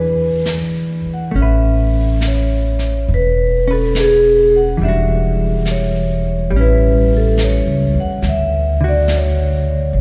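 Intimate and tender, this jazz ballad excerpt sways at 70 BPM with a gentle swing in A major, drifting from E7 through Aadd9, Em9 and A7 to Dmaj7. A ringing, metallic vibraphone with medium mallets and its motor off carries the melody over dark, clean fingered chords from a compressed hollow-body electric guitar, while a woody, thumpy pizzicato upright bass sits up front. Soft, airy brushes on snare and hi-hat join at 0.5 s, and a cathedral-like reverb bathes the whole in the long, wet glow of a church or concert hall.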